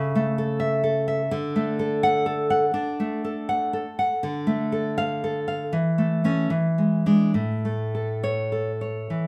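A fingerpicked nylon-string guitar sits up front, its fresh strings giving a warm, glowing tone as it plays this romantic classical solo in A major, spanning A2 to F#5 across a 9.3-second excerpt from a longer piece. The mood is sunny and nostalgic, moving with a rubato feel between roughly 68 and 86 BPM in 4/4 as the harmony passes from A/C# through D and a darker Dm before resolving via A/E and E7 back to A. A moderate large-studio reverb surrounds the guitar with an airy, natural sense of space, as if captured live in the room.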